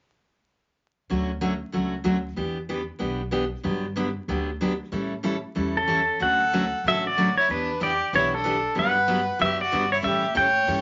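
A bright, full-bodied dreadnought acoustic guitar, picked up front with audible finger squeak, opens this cheerful, down-home western swing passage in D major at 188 BPM, alongside a dark, thumpy pizzicato upright bass on gut strings, cycling through Dmaj7, Em7, Gmaj7 and A7. At 5.8 seconds a clean, twangy pedal steel guitar takes the melody up front, compressed and fingerpicked with slide and volume swells, while a single close, biting fiddle adds an intense second line with light vibrato and an airy bow. A short club reverb and vinyl crackle give the whole a dull, vintage sheen.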